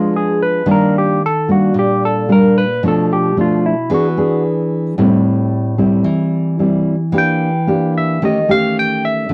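From the first moment, a bright, barky tine electric piano and a full-bodied nylon-string guitar sound together in this sophisticated, breezy bossa nova clip, cut from a longer piece in a straight 4/4 feel. The electric piano carries the melody as a solo across the whole 9.3 seconds, lightly overdriven through a combo amp, with a phaser and a cassette-tape coloring. Beneath it, the acoustic guitar supplies thumb-plucked accompaniment in a deep classical tone, sitting slightly louder than the piano, with both instruments up front. The harmony moves through jazzy changes, opening on a rootless Bb7b9 and passing through Ebmaj7, Bm7b5 and Am7 before closing on Eb7#11. A moderate studio reverb and the soft haze of a home cassette recording give the pair a cozy, intimate air.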